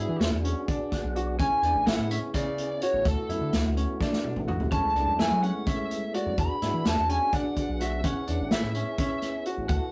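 An overdriven lead guitar through a small cranked amp carries the melody up front, its picked tone cutting across an intricate, tense passage of progressive instrumental band music in 7/8 at 253 BPM counted in eighths, with a straight feel. Beneath it, a mellow tonewheel organ with key click, chorus vibrato and a fast rotary speaker fills out the accompaniment and adds a short fill at 0.7 seconds. A brilliant vintage grand piano runs arpeggios in the middle register, while a round analog bass with a deep, dark, sustained sawtooth-and-sine tone and a touch of ring modulation anchors the low end. An acoustic drum kit played with bundle sticks, featuring a punchy kick, medium-tuned snare, hi-hat and toms, comes in at 0.2 seconds and drops a fill at 4.0 seconds. The harmony cycles through E9, Amaj9, D6/9 and F#m11, and the rough rehearsal-room recording wraps the band in a moderate small-room reverb, cut from a longer piece.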